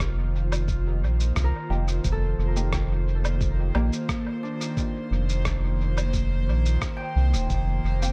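A deep, round analog bass sits up front in this short, spacious ambient dub excerpt at 88 BPM in F mixolydian, moving from F7sus4 to Eb6/F beneath an airy, breathy pad with chorus and a muffled, thumpy electronic kick in the background. A sampler-style rim click, shaker and woodblock add tape-warm percussion with studio reverb and dub echo, while a fingerpicked, ringing Celtic harp enters at 1.4 seconds with arpeggios trailing into dub echo. A muted, filtered chord stab with phaser drifts in from 1.7 to 3.9 seconds and returns at 8.0 seconds, all set in a hazy, echo-heavy digital ambience.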